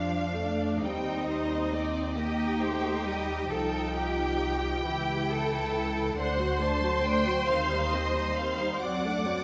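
This solemn, melancholic excerpt from a slow romantic movement for string orchestra opens with the violin section carrying a focused melody, over violas and double basses. At 0.4 s a second violin line enters above in an expressive voice, alongside the cellos, which sound distant as they play a high bass part. Every section is bowed with vibrato. The smooth, close violas and the cellos sit most prominently in the texture, while the double basses hold an even foundation. The music moves in a rubato 6/8 at about 45 BPM, tuned to A4 = 439 Hz, and its harmony passes from Dm/F through Cm, A7/C# and D before settling on D7/F# at 8.8 s. A wet recital hall reverb surrounds the orchestra, and the top end is darkened, with nothing above 7.7 kHz.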